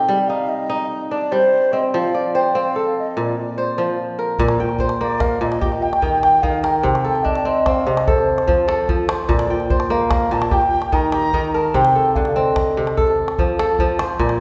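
A lush, reverberant hall surrounds this short cut from a longer piece of West African string and xylophone music, lending it a hypnotic, reflective air in a rolling 12/8 lilt. Up front, the kora rings out in crisp, fingerpicked arpeggios that span from its low register up into the treble, its acoustic tone warm and resonant. Above it, a mellow baroque flute carries the melody from a distance, its airy wooden voice tongued and shaded with expressive vibrato. At 4.4 seconds the calabash enters, deep and close, its dry acoustic thump sitting apart from the hall's bloom as the music moves into its second section. The harmony circles through minor and major chords such as Cm, F, Bb and Eb, touching on a Bbsus2 and a Cm13 along the way before the passage breaks off at 14.4 seconds.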